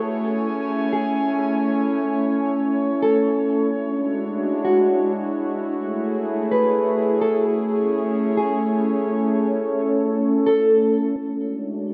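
Awash in a lush hall reverb with a rough home-demo feel, this blissful, floating half-time hip hop excerpt at 129 BPM in A major puts a warbling, nostalgic, detuned tape-like pad up front, sustaining chorused Amaj7, E13 and F#m9 chords from 0.0 seconds, while a dark, clean, fingered electric guitar carries a filtered, delayed melody from 0.9 to 11.1 seconds.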